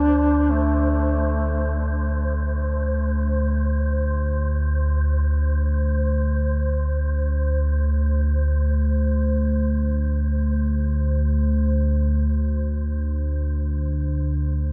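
A deep, rumbling drone anchors this dark ambient excerpt, sitting up front on a sustained D2 with a slow attack, long release and a lush chorus that gives its wave-folded tone an ominous, warbling, vintage character, while a filter sweep moves across it for the full 14.7 seconds. In free time, a mellow duduk plays a brief folk-style solo melody between A3 and D4 over the first 1.9 seconds, its smooth top shaped by vibrato and scooped notes and trailed by delay. Faintly, an airy, breathy noise layer tuned to C5 drifts like wind through the whole passage and fades out across it. The harmony holds on a single Csus2/D colour, and a huge, wet reverb places everything in a vast, echoing space. The mood is desolate and dark, a fragment cut from a longer piece.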